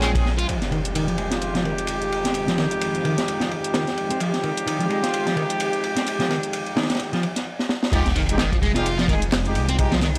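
Energetic and raw, this breakbeat excerpt in F minor drives along at 129 BPM in 4/4 with a swung 16th feel, led by a punchy, saturated acoustic break kit with a high-tuned snare and dark cymbals, layered under a quieter electronic garage kit of handclaps, hi-hat and ride. A sludgy, double-tracked overdriven guitar riff and up-front classical-style brass stabs, both roughened with 12-bit sampler grit and analog delay, sit over a very quiet, swirling phased pad whose filter sweeps from 0.5 to 7.9 seconds around an Fm7 chord. After a drum fill, the drop at 7.9 seconds brings back the deep, rumbling detuned saw bass alongside an electronic impact and sub drop, all within a dry, gritty hardware sound with light reverb.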